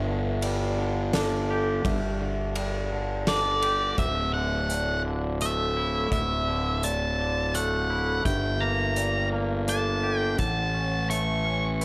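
A dark, distorted octave-fuzz lead guitar carries the melody from 3.3 s, soaring up front over this euphoric post-rock passage in 3/4 at 84 BPM in D major, moving through Gsus2, Dsus2, Gm and A. Beneath it, a twangy, clean electric guitar plays fingered arpeggios colored with spring reverb and slapback echo, while a metallic, ringing vibraphone with slow motor vibrato adds arpeggios in the background. A round, punchy overdriven bass sits up front, and a loose indie drum kit with a fat snare, tight kick and dark cymbals joins at 0.4 s, all set in a small room.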